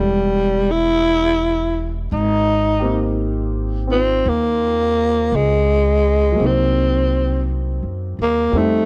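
A growling, breathy tenor saxophone carries the romantic melody of this intimate jazz ballad with subtone vibrato and scooped notes, up front over smooth vintage grand piano chords and a woody, thumpy pizzicato upright bass, all captured in a dry, close 1970s-style studio sound in this short cut from a longer piece.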